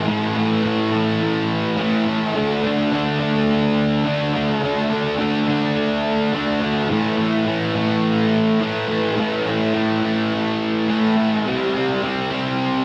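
Hazy and wistful, this rock fragment, cut from a longer piece, moves at 106 BPM in a straight 4/4, with a lone fuzz guitar playing throughout its 12.8 seconds. The bright, double-tracked electric guitar is picked and sits up front, its distorted tone carrying a subtle chorus and slapback echo as it moves through power chords on A, D and C, between A2 and D4. A moderate concert-hall reverb surrounds it, and the master is dense and heavily limited.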